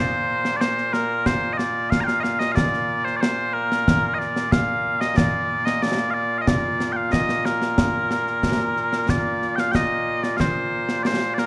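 Mellow small bagpipes open this proud, ceremonial fragment of Scottish traditional pipe music, carrying a sweet, continuous melody with vibrato that spans Bb2 to Bb5 in Bb major at 92 BPM in a straight 4/4. From 0.5 seconds a concert snare drum and concert bass drum join up front, their acoustic sound coloured by dark cymbals and a small-room ambience. Light reverb lends the whole performance a gentle sense of space.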